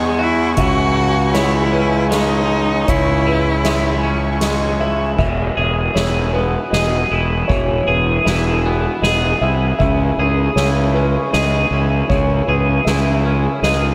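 In a straight 3/4 at 78 BPM, this euphoric, hopeful post-rock excerpt in E major moves between Eadd9 and C#m, with a fuzzy, overdriven fingered bass sitting up front beneath soft-mallet drums whose boomy kick and dark cymbals enter at 0.6 seconds. A twangy, scooped electric guitar and a felt-muted upright piano, its action noise audible in the background, both play arpeggios through analog chorus and diffuse ambient delay, while a dark studio string section holds sustained sul tasto chords. A clear, smoothly bowed solo cello carries the melody with vibrato from 0.2 to 4.4 seconds, and the whole dreamy mix is soaked in lush hall reverb.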